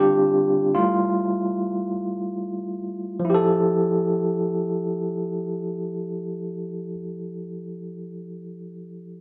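A moderate large-studio reverb with a 1.0-second decay surrounds this R&B passage, played live by a band in one room. An overdriven tine electric piano sits up front, barky and gritty through a combo amp with fast tremolo, and plays in free time between D3 and A4, soloing and slowing down over the first 3.3 seconds as it moves from D7sus4 to Fmaj9. The mood in F major is tender and sensual.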